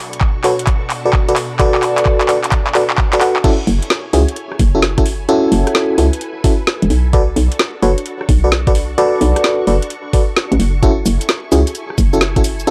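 UK garage two-step with a skippy, bouncy swing, where a silky, warbling string machine pumps softly beneath glassy, bell-like FM electric piano stabs carrying chorus and analog delay, while a garage drum kit with a woody snare, metallic hats, handclaps, rim clicks and shaker rides a fill over a knocking electronic kick through the build-up until a hollow, punchy FM bass arrives at 3.7 s after the drop, all colored by a dry, gritty cassette-tape sound and digital ambience.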